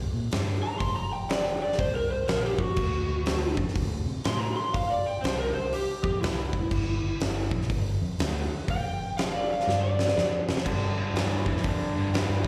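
Swaggering and raunchy, this cut from a longer blues rock and southern rock power-trio piece swings at 122 BPM in 4/4: a round, foam-muted fingered electric bass and a huge, up-front arena drum kit with a fat snare and punchy kick back a dark, overdriven slide guitar solo played with fingerpicks and slapback echo, and after a drum fill at 9.7 seconds a bright, double-tracked raw garage guitar riff enters at 10.7 seconds, the gig heard through the venue's PA with recital-hall reverb.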